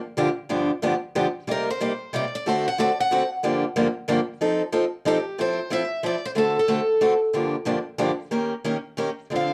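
A swung waltz at 184 BPM in 3/4 drives this short, playful jazz snippet cut from a longer piece, with the eighth notes lilting at a lively clip. A picked steel-string acoustic guitar on a concert-sized body carries the accompaniment from 0.2 seconds, spanning G2 to Bb4 with fresh-stringed sparkle and the occasional finger squeak. A second picked steel-string guitar, a boxy parlour instrument, takes the melody from 1.5 seconds, ranging G4 to F#5 and dressed in slapback echo and plate reverb. The harmony moves through seventh chords such as G7, Cm7 and D7 before settling into F major with an Fmaj7 at 5.4 seconds, where a new section begins. Both guitars sit up front in a wet studio room, and the whole recording carries the worn, warbling pitch drift of old cassette tape.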